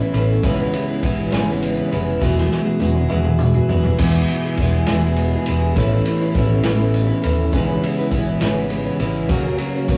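Folk rock and heartland rock in a straight 6/8, this short cut from a longer piece feels hopeful and nostalgic. A compressed, clean twelve-string electric guitar sits up front carrying the riff, while a bright, shimmering picked twelve-string acoustic guitar with fresh strings fills out the accompaniment. A round, punchy hollow-body short-scale electric bass and a vintage drum kit, natural in tone with dark cymbals, a medium-tuned snare and a rolled-off top, join at 0.1 seconds, with a drum fill between 2.2 and 4.0 seconds marking the move into a new section. A jingly tambourine enters at 0.3 seconds and stays in the background. The harmony moves through chords such as C#m7/G#, Eadd9 and Aadd9 before landing on F#, and the whole take has the rough, saturated character of a rehearsal-room recording with moderate studio reverb.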